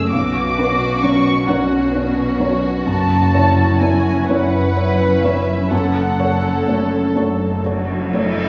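Sorrowful and moving, this slow, rubato cinematic excerpt in F# minor and 6/8 at 41-44 BPM sets a veiled, con sordino symphonic violin section singing the melody over a lush muted studio violin second line, a mellow felt-muted upright piano with audible action noise, background violas, and dark bowed cellos and distant double basses on the bass, all heard from further back within a wet scoring-stage reverb as the harmony moves from Bmadd9 to F#m7 and settles on F#m.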